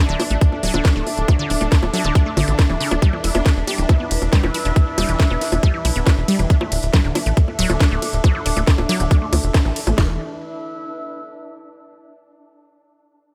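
Psychedelic trance at 138 BPM with a driving, psychedelic mood, this excerpt opens on a drop where a tight, punchy sawtooth sequencer bass and two layered electronic garage drum kits, one up front with a tight kick and cracking snare and another adding crisp hats, ride, bongos and snare, all tape-tinged and re-recorded in a large room, push under a lush detuned unison pluck riff with cassette grit and digital delay, a swarming granular drone in the background, and a warbling, nostalgic lo-fi pad with chorus that rides the sidechain pumping, while chords move between D5 and E5, a band accent lands at 9.5 seconds, and the pad carries on alone until 11.7 seconds.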